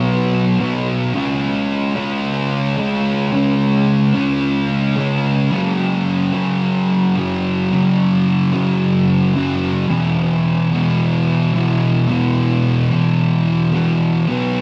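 Dreamy, blissful rock in E major at 110 BPM, this short cut from a longer piece features a lone electric guitar with thick, dark fuzz tone, picked and double-tracked up front, spanning E2 to C#4 across B5, C#5, F#5 and E5 power chords. The guitar's distortion is colored by analog chorus and a diffuse ambient delay. The whole mix is soaked in a moderate plate reverb with a long 3.9-second tail, giving the roughly 14.6 seconds of playing a hazy, floating feel.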